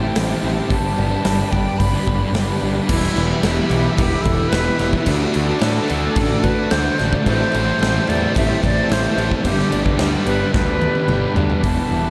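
A big acoustic rock drum kit sits up front from 0.2 seconds, its punchy kick, medium-tuned snare and bright cymbals driving a hazy, brooding stretch of shoegaze and dream pop at 110 BPM in a straight 4/4, cut from a longer piece. Beneath it, a growling, round overdriven bass anchors the low end. In the background, a thick fuzz guitar with distortion and lush chorus plays a riff, alongside a dark, slightly broken-up electric guitar through a small old amp with reverse reverb. A hollow, pure concert flute carries the melody with vibrato and tongued notes, trailed by analog delay. It floats over a shimmering retro pulse-width pad holding slow-attack chords and a very quiet, woody twelve-string acoustic guitar picking octave-doubled arpeggios. After opening on Am7 and G, the harmony moves through Em, D, Am7 and G, and at 2.9 seconds a double-tracked overdriven guitar joins very quietly with another riff. 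A drum fill from 10.5 seconds rounds off the passage, and a huge ambient reverb soaks the mix in a dreamy wash.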